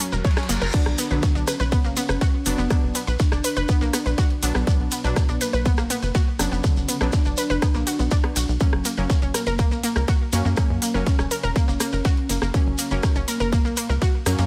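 A brief reverse cymbal opens this cinematic, dramatic melodic techno excerpt in B harmonic minor at 122 BPM, as a dark, full-bodied octave-layered synth lead with vibrato and phaser, a detuned analog pluck playing bright arpeggios, and brassy synth stabs enter, all three chorused, delayed and pumping against the kick. A punchy electronic kick and a tight sawtooth sequencer bass sit up front, while a house kit with crisp hats, a grainy acoustic shekere and a very quiet, gritty breakbeat sampler kit fill out the background. The dry mix settles from F# onto Bm at 0.7 seconds before returning to F# at 8.6 seconds.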